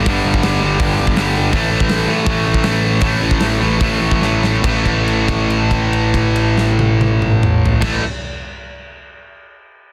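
A cranked stack guitar drives this upbeat, rebellious punk rock clip at 140-164 BPM in straight 4/4, its bright, overdriven riff playing alongside a second overdriven electric guitar over a G5 to A5 change, with a growly fuzz bass underneath and a dark, punchy big-room drum kit up front, the pace slowing from 1.5 seconds until a drum fill at 4.2 seconds leads into a held note from 4.6 seconds, set in light reverb with a dense, heavily limited master.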